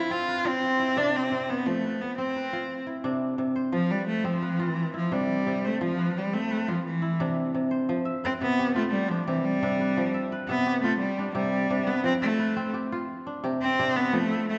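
A rich, bowed cello carries the melody in this flowing, joyful West African string piece, its single player's tone focused and touched with vibrato as it moves between E3 and F4. Beneath it, an acoustic kora plays fingerpicked arpeggios from C3 to E5, its crisp, ringing notes sitting up front alongside the cello. The music moves in a straight 12/8 at 115 beats per minute counted in dotted quarters, set in F Lydian with the harmony alternating between F and C chords. From 7.9 seconds the cello steps forward into a solo section over the kora's continuing patterns. A generous concert-hall reverb, lingering about 2.4 seconds, surrounds both instruments in a churchlike space with a softened top end, and the passage is cut from a longer piece.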